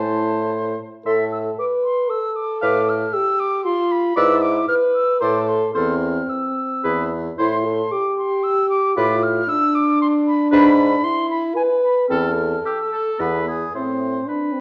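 Restless and urgent, this quick classical-period movement for wind quintet, cut from a longer piece in triple time with uneven, rubato beats, sets an airy, soft-edged flute melody up front over a distant oboe second line with light vibrato, a dark clarinet accompaniment tucked in the background, a warm, present French horn accompaniment and a bassoon bass, heard through a wet recital hall and a worn cassette tape sound with warbling pitch drift.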